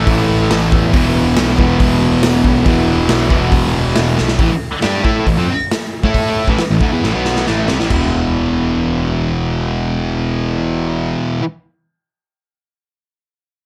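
A raw, gritty garage rock excerpt with light reverb, driven at 137 BPM in a straight 4/4 by a double-tracked fuzz guitar riff that sits up front, bright and thick, moving through A5 and E5 power chords from E2 to A4. Beneath it a growly, overdriven picked electric bass runs from E1 to A2, while a punchy, saturated acoustic kit with a medium-tuned snare, crash, hi-hat and toms pumps in a bright stone room, its top end rolled off. The drums fill at 4.2 seconds and again from 7.0 to 7.9 seconds before dropping out at 8.0, leaving guitar and bass to carry the last section, the bass stopping at 11.1 seconds and the guitar ringing on to 11.4.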